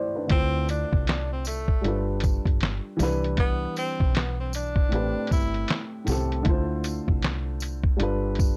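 A breathy tenor saxophone carries a jazz-style solo, full of vibrato and scooped notes, from 0.3 to 5.9 seconds in this reflective, hazy lo-fi hip hop excerpt with a swung 4/4 feel. A dark, woody upright piano with a cassette-tape tint opens at 0.0 seconds and moves through Dm7, G7, Cmaj7 and Am9. Beneath it sit a round, punchy dub bass and an up-front, muffled, compressed sampler-style kit with a thumpy kick, snare, hi-hat and handclaps, plus a close, jingly tambourine in a dry, gritty mix.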